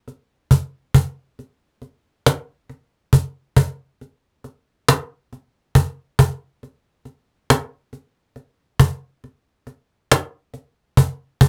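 Lightly reverberant, this short cut from a heartfelt, romantic pop piece in a slow 6/8 at 46 BPM (counted in dotted quarters) features only an up-front acoustic cajon, snappy with rattling snares and played with hard hands, its compressed, saturated tone carrying an opening passage that shifts into a new section at 3.6 seconds and runs to 11.5 seconds.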